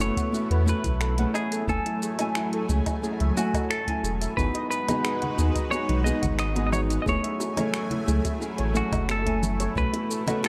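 A round, mellow sub bass sits up front in this wistful, relaxed sunset chillout excerpt at 89 BPM in F# dorian, moving through B7sus4, F#m9 and G#m7 beneath a clean, hollow-bodied semi-hollow electric guitar melody and a small, fingerpicked nylon-string guitar, both carrying analog delay. A thick, bright detuned pad with chorus and phaser holds sustained chords, while a dark, shimmering steel pan plays arpeggios in the background with 12-bit sampler grit and delay. A tape-warm electronic kick and an overdriven deep house kit of finger snaps, metallic hi-hat, shaker and woodblock drive the groove, very quiet bongos and congas enter at 4.5 s, and a moderate spring reverb gives the mix an echo-heavy feel.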